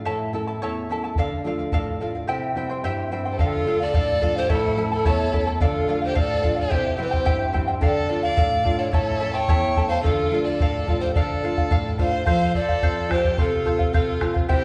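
Charango and nylon-string guitar open this wistful, earthy Andean folk excerpt in D minor at 108 BPM in 2/4, the charango bright and shimmering over the guitar's woody, full-bodied fingerpicking, before a round bombo enters at 1.2 seconds, a guitar fill leads in at 2.6 seconds, and at 3.3 seconds a breathy pan flute takes the melody with soft-attacked vibrato while a clear, focused violin adds a second line, all set back in a recital-hall reverb as the chords move through A, Dm and C to close on F.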